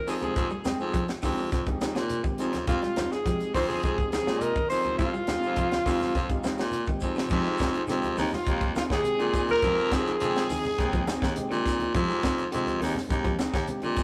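Funky and hypnotic, this afrobeat excerpt rides a straight 4/4 groove over an Fm7 chord in a rough rehearsal-room sound with tube saturation and a wet stone-room reverb. A clear alto saxophone carries the melody with vibrato and scooped notes, while a very quiet, brilliant trumpet with a raspy growl plays a second line, both dropping out at 11.6 seconds. Up front, a gritty, growling baritone saxophone holds down the bass alongside a dry, polished funk kit with a high-tuned snare and tight kick. In the background, two slightly broken-up electric guitars play picked arpeggios and darker fingered stabs, joined by a worn, slightly out-of-tune tine electric piano that is lightly overdriven. A grainy shekere and very quiet, low-tuned congas played with hard hands fill out the percussion, and a drum fill at 7.0 seconds leads into the second section.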